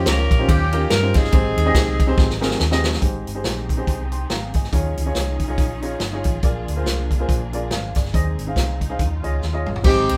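Uptempo gospel with a hopeful, uplifting mood, this short passage from a longer piece swings easily in four, played by a band that sounds live together in one room with light reverb. A clear, punchy saxophone section carries the melody up front with vibrato and a smooth top, stating its line in the opening 2.6 seconds and returning briefly near the close. Underneath, a woody upright piano accompanies throughout while a dark, round hollow-body electric bass, fingered and amped, anchors the low end. The swinging big-band drum kit sits forward with a punchy kick and medium-tuned snare, working across hi-hat, ride, crash and toms, with fills around 2.2 and 9.4 seconds. From 3.0 seconds a lush symphonic string section, bowed and expressive with portamento, adds soft sustained chords beneath the band as the harmony moves through rich extended chords.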